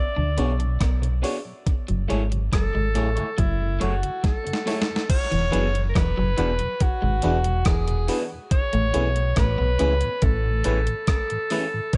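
Lovers rock reggae with a bittersweet, smooth mood, cut from a longer piece, in which a breathy alto saxophone with subtone and scooped notes carries the jazz-style melody up front, touched by tape echo. Beneath it sit a round, punchy dub bass and a crisp 8-bit drum machine with a thumpy kick, overdrive and gated reverb. A glassy, bell-like FM electric piano with chorus, a very quiet tonewheel organ with a slow rotary sound, and two slightly broken-up guitars in the background (one playing a tape-echoed riff, the other phaser-tinged stabs) fill out the sound, while a drum fill at 4.2 s leads into the second half, where the chords move from Bm69 and F#m9 to E7 and Amaj7.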